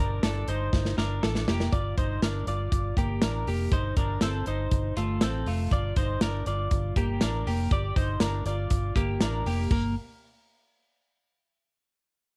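Wistful and bittersweet, this short jangly indie pop excerpt moves at 120 BPM in a straight 4/4, centred on G minor. A clean, compressed twelve-string electric guitar sits up front, picking arpeggios from the start, its tone warm. Beneath it, a vintage fingered electric bass plays a dark, round, foam-muted line with an amped punch, holding low in its register. An acoustic drum kit enters at 0.2 seconds with bright cymbals, a medium-tuned snare, punchy kick and hi-hat, and a drum fill between 0.7 and 1.7 seconds comes just before the harmony shifts from G minor to G minor seventh. A light reverb gives the mid-forward drums a sense of studio room, and the chord returns to G minor at 9.7 seconds as the clip cuts away from the longer piece.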